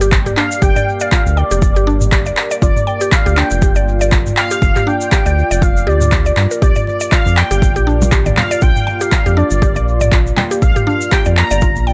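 Earthy and driving, this afro house excerpt rides a deep, tape-warm electronic kick and an up-front afro-pop kit with handclaps and toms under a round, sawtooth analog bass that pumps with sidechain, while a woody, mallet-like FM pluck spins echoing arpeggios over a moody, detuned pad treated with chorus and phaser, a grainy egg shaker ticks through tape echo, a smooth sawtooth lead with vibrato and portamento sings the melody from 0.4 seconds, and low-tuned, dry congas join in the background at 6.6 seconds as the harmony moves from Gm to Bb in an echo-heavy, nearly reverb-free mix.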